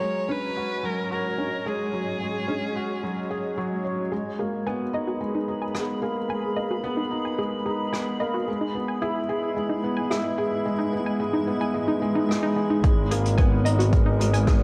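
A dark, expressive violin with vibrato opens this hypnotic, intimate piano and strings electronica excerpt in G# minor at 110 BPM, over a cloudy granular pad and a felt-muted upright piano riff whose audible action noise sits up front with digital delay. At 4.1 seconds a warbling, lo-fi pluck adds chorused arpeggios with sidechain pumping as the build-up begins, and from 5.7 seconds a distant brushed kit plays hi-hat and rim click with a rolled-off top. The drop at 12.8 seconds brings a punchy electronic kick and a nasal, bowed double bass section on G#1, set in a moderate concert hall reverb.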